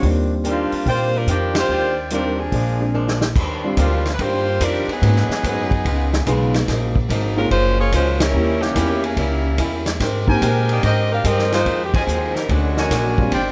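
A joyful big band swing excerpt at 144 BPM in Eb major opens with an edgy, close-miked saxophone section carrying the melody with vibrato over woody, thumpy pizzicato upright bass, a boxy picked acoustic guitar in the background, a present grand piano that drops out at 10.4 seconds, and a vintage drum kit with dark cymbals and a punchy kick, while a clear, tight trumpet section adds brassy stabs from 0.9 seconds and again from 10.3 seconds, with band accents, a short drum fill and light reverb.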